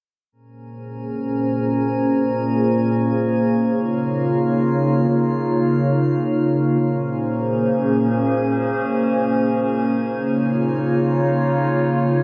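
Hip hop in free time and B-flat minor, this melancholic, spacious fragment from a longer piece drifts between Bbm7 and Db6 chords inside a huge, wet ambient reverb. A warbly, tape-like pad sits up front with detuned, nostalgic lo-fi sustained chords from 0.8 seconds, shaped by chorus and a filter sweep. Behind it, a quieter glassy harmonics texture of drifting sine overtones enters at 0.7 seconds and hovers calmly to the end.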